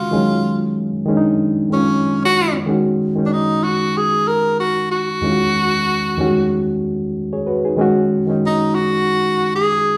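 R&B at 94 BPM in Eb phrygian, this late-night, soulful passage from a longer piece rides a light sixteenth-note swing as a breathy, close-miked tenor saxophone carries the melody with jazz-style vibrato. A clean, reedy electric piano sits up front beside it, accompanying through Ebm9, Ebm7 and an Emaj9 before returning to Ebm7. The saxophone takes a solo in the opening 2.7 seconds, and the two players sound live together in one room, bathed in a wet large-studio reverb.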